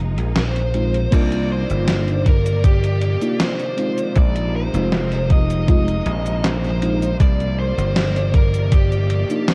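A straight 4/4 groove at 79 BPM sets a nostalgic, hazy vaporwave mood in C minor, heard in a short cut from a longer piece. A gated 80s digital drum machine with an overdriven, sampler-style edge plays cabasa, crash cymbal, hi-hat and a gated-reverb snare, re-recorded in a small room. From 1.1 seconds, a thumpy, overdriven electronic kick sits up front. A punchy slap bass, direct and amped, holds the low end, while a bright studio string section sustains distant, bowed chords with vibrato. An FM electric piano with a soft pad layer adds dreamy, full-bodied accompaniment, its fast-attack, decaying tone dark and touched with subtle chorus and tape echo. A biting, overdriven lead guitar carries the picked melody through tape echo over chords moving between Bb9sus4 and Cm11, and the recording sits in a cassette-tape digital ambience.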